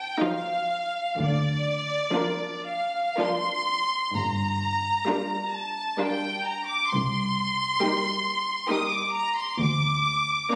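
In a rubato 3/4 drifting between 54 and 69 BPM, this slow romantic movement for string orchestra opens with an up-front, vibrato-rich violin section carrying a smooth melody, joined at 0.2 seconds by a second violin line and a focused viola accompaniment. At 1.2 seconds, bowed double basses and a warm, expressive cello section with soft attacks and portamento settle in beneath, as the harmony moves through Bb/D, Gm7 and Cm7 in a tender, serene mood. The strings sit in a wet, reverberant space, sounding as if captured on a phone in the room with added compression, and the passage is cut from a longer piece.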